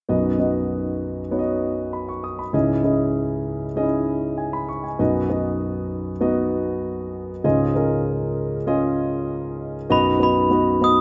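Warm and uplifting, this short piano-driven pop excerpt in B major moves at 98 BPM in a straight 4/4, with a dark, mellow grand piano, intimate and smooth with a vintage tone and audible action noise, accompanying over chords of B, C#madd9, B and C#add9, and a metallic, bell-like glockenspiel struck with hard plastic mallets joins it at 9.9 s with a ringing melody, both instruments sitting up front in a lush hall reverb within a rough home-demo mix whose top end is dull.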